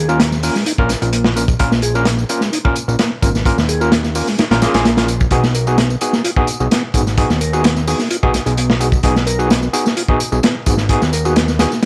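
A fat, detuned sawtooth bass and a soft, flute-like tonewheel organ swirling through a slow rotary speaker and analog delay open this raw, swaggering breakbeat excerpt, joined almost at once by barky, overdriven electric piano stabs pulsing with medium tremolo through a combo amp. A crunchy, saturated breakbeat kit with a punchy kick and medium-tuned snare sits up front with the bass and piano, while an overdriven analog tambourine rides low in the mix and the organ riff stays in the background. The dry, gritty sound carries vinyl crackle and a light small-room reverb, with the harmony moving from Bbm to B6 at 5.3 seconds.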